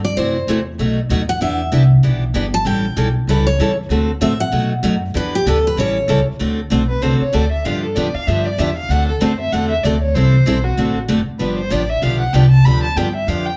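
A swinging 4/4 pulse drives this charming jazz manouche excerpt, where a woody, thumpy pizzicato upright bass on gut strings and a picked concert-guitar accompaniment sit up front as a bright, full-bodied steel-string dreadnought guitar takes the melody with audible finger squeak until 6.2 seconds, before a dark bowed violin enters at 6.9 seconds with expressive vibrato, portamento and a smooth top, all heard from further back in a club reverb.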